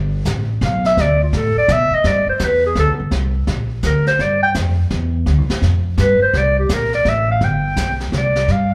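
Heard through a club PA in a small, reverberant room, this excerpt of sophisticated, playful small-group jazz swings in 3/4 at 168 BPM, moving from Gadd9 through G, Csus2, Em and Dm7. A woody pizzicato upright bass starts at 0.0 seconds, and a brushed kit with a high-tuned snare, hi-hat and boomy kick follows at 0.2 seconds, its sound carrying a slapback echo. From 0.6 seconds a warm clarinet takes the solo up front, singing with vibrato and scooped notes in a jazz style, its line also touched by slapback echo.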